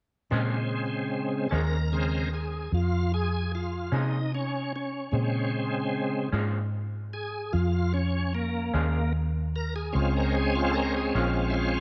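Smoky and soulful, this slow blues in 12/8 at 50 BPM sits on a Bbm7 chord in Bb minor, with a bright, shouting tonewheel organ taking the solo up front through chorus vibrato, key click and a slow rotary speaker, a dark, round, punchy muted electric bass underneath, and a twangy, slightly broken-up guitar through a small old amp adding tremolo-laced accompaniment, all bathed in a moderate echo chamber reverb in this short excerpt cut from a longer piece.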